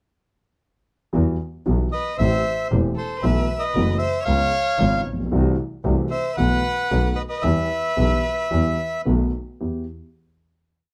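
Close, detailed microphones and light reverb give this short tango an intimate, present sound. The complete piece moves at 114 BPM in 4/4 with a rubato feel, sits in E harmonic minor tuned to A4 = 436 Hz, and carries a melancholic, tense mood. A dark, woody upright piano and an earthy bowed double bass with light vibrato enter at 1.1 seconds, both marking a marcato tango rhythm in four, the bass reaching down to E1. From 1.9 seconds a reedy, smooth bandoneon sits up front with a motif-based melody built in sentence phrases. Beneath it, a single bowed violin plays an expressive harmony line mostly in thirds, with vibrato, portamento and a soft attack. The harmony travels from Emadd9 through B7sus4 and C#7 back to E minor, and the piece closes on a final E minor chord at 9.6 seconds.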